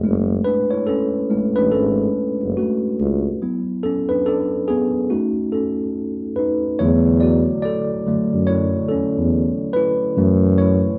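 A worn, slightly out-of-tune tine electric piano opens this sultry, smooth neo-soul and R&B excerpt at 71 BPM in F# minor, soloing clean and up front over swung 16ths and chords moving from F#m9 to E7sus4, while a mellow, close-miked tuba carries the bass with vibrato and scooped notes in a jazz style, the live band sharing a moderate stone room reverb.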